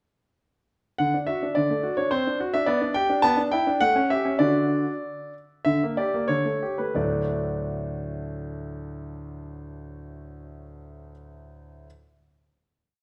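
This classical-period piano sonatina in D major is a complete short piece with an elegant, playful mood, moving in 2/4 at roughly 88-108 BPM with a flexible, rubato feel. A concert grand piano plays solo throughout, sounding clear, smooth and vintage, with a deep bass and an up-front presence across a range from D2 to A5. A single-line melody sits over a broken-chord bass, and the harmony moves from D through D7/C, G/B, Em7/B and A7 before returning home. The tempo slows between 3.8 and 7.0 seconds, easing into a brief coda that colours the cadence with Gm/D and A7/D. The piece closes on a final D major chord from 7.0 seconds, set in a moderate recital-hall reverb that gives the notes a natural sense of space.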